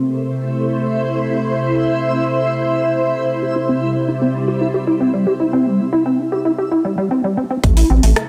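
A straight 4/4 IDM pulse at 114 BPM in A minor frames this cerebral, intricate fragment, cut from a longer piece, where a silky string machine with phaser and ensemble chorus holds sustained chords from the start, moving from Am to C at 3.4 seconds, while a reversed, dreamy, detuned texture glows faintly in the upper register. A rubbery, resonant acid bass enters with arpeggios at 3.4 seconds, coloured by lush chorus and digital delay, before a round, mellow analog bass, an overdriven tight electronic kick and a tape-tinged analog drum machine with metallic hats, bongos and rim click arrive together at 7.6 seconds as the harmony returns to Am. The whole sits in a moderate echo chamber reverb with a dense, heavily limited modern master.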